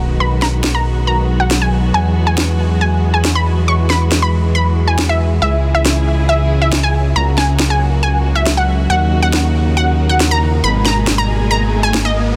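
A straight 4/4 pulse drives this soaring, uplifting trance passage, cut from a longer piece, with a cracking, overdriven electronic snare running from 0.4 to 12.0 seconds over a gritty, saturated sawtooth synth bass that sits up front. A bright, detuned unison pluck carries the melody through cassette-tape colour and tape echo, while a rich, bowed symphonic string section with light vibrato holds sustained chords moving from B6 through E add9 and C-sharp minor toward G-sharp minor add9. In the background, a sub drop opens the passage and an electronic riser builds from 10.4 seconds, all within a dense, heavily limited modern master with light reverb.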